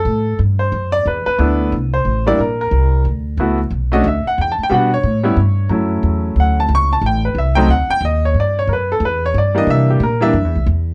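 Jazz piano trio music with a sophisticated, swinging mood at a brisk 181 BPM, in which a clear, intimate baby grand piano carries the melody with its action noise audible up front while a woody, pizzicato upright bass on steel strings supports it, the two moving through chords such as G6, Dmaj7 and C9 in light reverb under close, detailed microphones, with the piano stopping at 10.6 seconds just before the bass ends this short cut from a longer piece.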